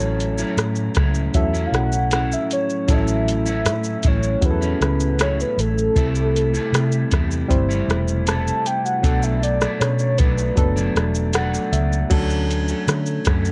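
Sunny and hazy, this indie and bedroom pop excerpt in A major moves at 78 BPM in a straight 4/4, with a round, octave-layered synth lead carrying a soft solo from the start to 12.1 seconds, tinted by subtle chorus and tape echo. Beneath it, a barky, reedy electric piano with a cassette-tape coloring adds a fill from 11.0 seconds, and a dark electric guitar at the edge of break-up brings subtle chorus and vibrato. An up-front, foam-muted, punchy bass and a soft vintage rhythm box with a deep kick, metallic hats and 12-bit sampler grit anchor the light-reverb mix as the chords drift from A6 through C6 and Bm7 to Dmaj7.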